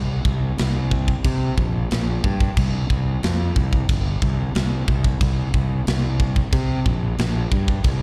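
Heavy metal at 91 BPM in a straight 4/4, aggressive and epic, with a growly, fuzz-drenched fingered electric bass driving overdriven lines from 0.0 seconds and a tight, polished drum kit of bright crash cymbal, tight kick and medium-tuned snare joining at 0.2 seconds, both up front in a live concert sound heard through the venue's PA with recital hall reverb, in an eight-second cut from a longer piece.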